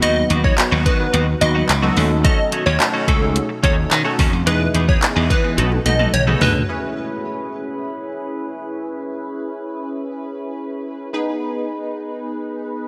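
A straight 4/4 dance-pop groove from a deep house drum kit with a deep kick and handclaps drives this confident, energetic cut, with punchy glassy slap bass up front and a drum fill closing the opening drop at 6.7 s. Over it, a catchy plucky unison lead with digital delay carries the melody, a twangy twelve-string electric guitar plays a chorused riff, and a very quiet ethereal FM pad holds sustained chords. The funky detuned polysynth comp continues alone until 12.9 s, all set in a lush hall reverb with bright 1980s-style digital production.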